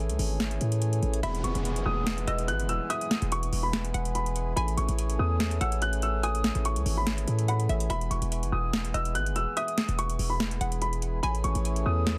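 A reedy, breathing pedal harmonium and a punchy, heavy 808-style bass open this wistful, dreamy trap cut in E major at 144 BPM with a half-time feel, joined almost at once by an overdriven analog drum machine with a crisp snare and metallic hats, the bass and drums sitting up front. At 1.2 seconds a dark, mellow grand piano with short sustain carries the high melody through delay, while a hollow, bouncy square-wave pluck with chorus and delay traces a second line in the background and a downlifter sweeps behind them until 4.6 seconds. The chords alternate between Amaj7 and E over a dense, heavily limited, dry mix, and the recording is cut from a longer piece.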